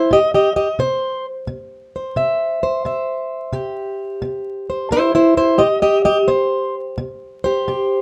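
Acoustic country blues with a swaggering, laid-back mood, moving at 87 BPM in 4/4 with a swung eighth-note feel in C major. A single fingerpicked, plugged-in steel-string acoustic guitar carries the whole 8-second fragment alone, sitting up front across a range from C3 to E5. Its parlour-style tone is boxy and warm, and finger squeaks on the strings add a close, human texture. The harmony rests on a C chord throughout. A moderate small-room reverb gives the guitar a snug sense of space, while a layer of vinyl crackle lends the recording an aged, dusty character.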